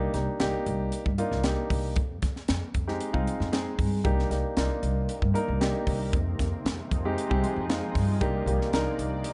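A dark, close-sounding mix frames this slick, driving electric jazz fusion clip in C minor at 115 BPM, where a polished, up-front grand piano comps through Cm9 and Fm7 over woody pizzicato upright bass and a crisp drum kit with a tight kick and high-tuned snare, until a shimmering, ethereal ambient pad with chorus and its own reverb slips in behind them at 5.0 seconds.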